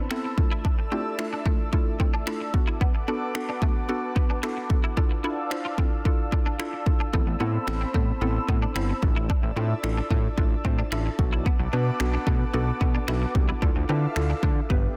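A woody, round mallet-like synth pluck with chorus and sidechain pumping opens this energetic dance-pop excerpt at 111 BPM, joined at once by an airy, breathy pad holding sustained chords and a twangy clean electric guitar riff with ensemble chorus, all moving through Dmadd9/A, Bm7 and Amadd9 harmony. From 0.1 seconds, a punchy, up-front electronic drum kit of finger snaps and kick drives the groove, with soft clipping on the snare. At 7.1 seconds, a fat, detuned analog bass with a filter sweep and sidechain pumping enters to thicken the dense, heavily limited modern mix.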